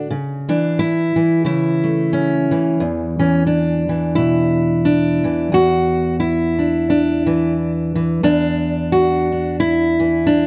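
A fingerpicked steel-string acoustic guitar plays alone in this short excerpt of gentle, nostalgic folk, its old strings giving a dark, woody tone heard up front through close, detailed microphones with light reverb. At 89 BPM in 4/4 with a lightly swung eighth-note feel, and tuned to A4 = 442 Hz, it moves from A/C# to E5 before shifting into a new passage at 5.5 seconds on a Dadd9/E chord, spanning E2 to F#4.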